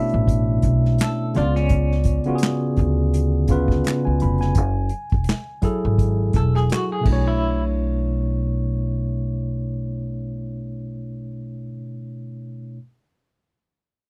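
Smooth and soulful, this neo-soul R&B excerpt in a lightly swung 4/4 sets a clean tine electric piano's Bm11, C#7b9 and F#m9 chords over a woody pizzicato upright bass and an airy, punchy acoustic drum kit played with bundle sticks, which drops out at 7.2 s, while a picked semi-hollow electric guitar adds a soft second line with tremolo from 1.0 s, all captured in a dry, close 1970s-style studio sound.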